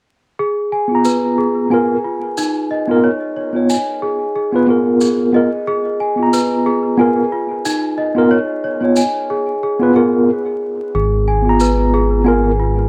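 Trip hop with a brooding, hypnotic pull, this short cut from a longer piece moves in a gently swung 4/4 over a single G#m69 chord. A large celesta, bell-like and delicate with the ringing brightness of hard felt hammers, opens at 0.4 seconds with arpeggios softened by a low-pass filter and tape echo. Beneath it, a mellow tine electric piano plays clean accompaniment through its built-in speakers, carrying tremolo along with its own filtering and tape echo. Maracas and a group handclap sit distant in a large room, adding a faint acoustic texture. After a brief stop at 10.3 seconds, a dark detuned saw bass arrives at 10.9 seconds, deep and rumbling with a beating, sustained low G#1 that sits up front. The whole carries light studio reverb and a dry, gritty hardware character dusted with vinyl crackle.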